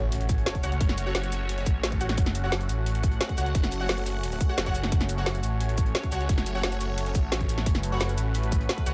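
Dark and mechanical, this short excerpt of technical drum and bass in F# minor at 175 BPM drives a swirling, thick phased detuned saw bass up front beneath a bright, resonant sweeping pad of sustained chords with chorus and sidechain pumping, while a bold, punchy orchestra-hit-like synth stab with built-in reverb and digital delay sits in the background, a tight electronic kick and a layered drum kit with a woody snare, metallic hats and shaker drive the groove alongside a very quiet, gritty breakbeat kit, and a faint electronic impact marks the opening 0.8 seconds, all in a dry mix.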